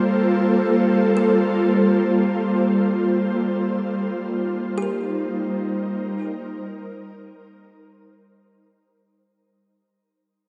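An airy, mellow pad of detuned sawtooth voices opens this serene, luminous ambient fragment in free time, holding sustained chords up front from Gm11 to Cm7 with slow attacks, long releases, ensemble chorus and a shimmer reverb. From 1.2 to 6.3 seconds a woody, hollow kalimba plucks quiet arpeggios in the background, its bright thumbnail pluck trailed by diffuse delay and shimmer. The whole sits in a wet concert-hall reverb with a rounded top end and fades out from 1.7 seconds onward.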